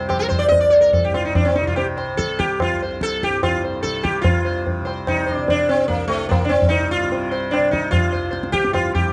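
Introspective and solemn, this brief cut from a longer Hindustani classical piece moves at 146 BPM in 3/4 with a straight feel, set in raga Bhimpalasi on C. The sitar carries the melody up front, its plectrum-plucked tone bright and buzzing with shimmering sympathetic strings, while a softly plucked tanpura holds a low, glistening drone beneath it and a low-tuned, ringing tabla joins at 0.1 seconds. The sound is dry and close, in the manner of a 1970s studio recording, with the tabla carrying a small-room character.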